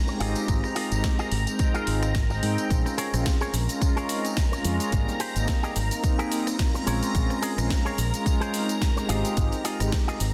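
A bright, up-front fingered electric bass with an envelope filter drives this sleek, groovy nu-disco cut from a longer piece, moving through Fm7/Ab, Bbm7 and Abmaj7 in Bb dorian at 108 BPM with a swung 16th feel. A punchy, tape-warm electronic kick up front and a house kit with a cracking snare, hi-hat, rim click and cabasa hold the pulse, while a band-limited tambourine sits in the background. A dark, clean, compressed envelope-filtered guitar riff with delay rides alongside a warbling analog pad and a lush, mellow string machine, and both of those pump with sidechain under light digital reverb in a dense, heavily limited modern master.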